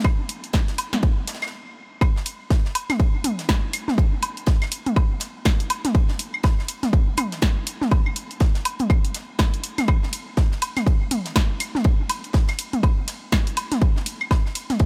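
Techno at 122 BPM in 4/4 with a swung 16th feel, cool and quirky, cut from a longer piece and built entirely from drums and percussion. An up-front, layered electronic kick with a tape-warm punch drives it, joined by overdriven analog drum-machine hi-hats, ride and a punchy snare from 0.3 seconds, and by electronic claves, woodblock and toms washed in a diffuse ambient delay. In the background sits a tight metal kit with bright cymbals and a medium-tuned snare, and after a brief stop at 1.5 seconds the drop lands at 2.0 seconds and carries through to the end, with little reverb overall.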